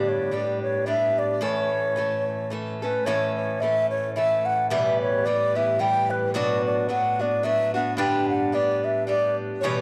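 Celtic folk in a lively, cheerful, swung 3/4, where an airy baroque flute with vibrato and a soft attack carries the melody up front over a boxy, woody parlour guitar picked on old strings and a dark bowed cello holding a low drone, until a distant, nasal fiddle with gut-string tone slips in with a brief second line at 9.6 s, heard within a wet echo-chamber studio ambience in this short passage cut from a longer piece.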